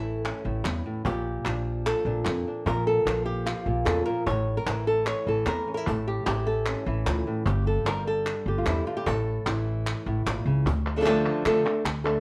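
Fiery and passionate, this short flamenco excerpt in straight 4/4 sets a bright, boxy fingerpicked flamenco guitar carrying the melody up front beside a woody pizzicato upright bass, while crisp palmas hand claps join a snappy, compressed cajon with snares that sits in the background. The harmony moves from A through Bb and back to A, touches G5 and A5, and shifts to Dm as the music turns toward a new section at 10.7 seconds. Light reverb and the worn, warbling drift of old cassette tape give the whole recording a weathered character.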